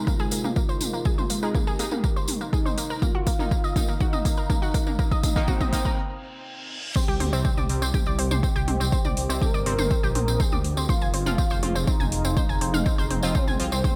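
An overdriven, punchy electronic kick sits up front in a straight 4/4 at 122 BPM, joined by a deep house kit of metallic hats, toms and crash, plus a jingly, close acoustic tambourine. This cinematic, driving melodic techno cut in C minor opens as a build-up over Abadd9 and Ebmadd9, with a drum fill and filter sweeps on the lead and the brassy synth stab, which carries phaser, chorus and delay and sits in the background. A mellow, nasal lead sings the melody with vibrato and ensemble chorus trailing dub echo, while a round analog pluck spins arpeggios with 12-bit sampler grit, and a deep, dark pad and a very quiet, evolving analog drone hold sustained tones beneath. The drone drops out as a brief break lands at 6.0 seconds, a reverse cymbal sounds from 6.2 seconds, and the drop arrives at 7.0 seconds over Cmadd9 and Fm. There a menacing, detuned saw bass with a filter swell takes the low end, pumping against the kick along with the pad, pluck, stab and kit, all in a lightly reverberant space.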